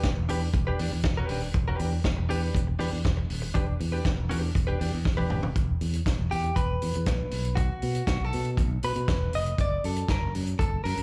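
Disco with a glamorous, sultry mood, cut from a longer piece and heard as a live gig through a club PA with small-room reverb, where a growly, punchy fingered electric bass and a tight, mid-forward soul drum kit sit up front, a drum fill at 5.1 seconds leads into the bright, compressed clean electric guitar with slapback echo, which accompanies from the start before stepping out for a solo from 5.6 seconds over chords moving from Em7 through E5 and B5 to F#.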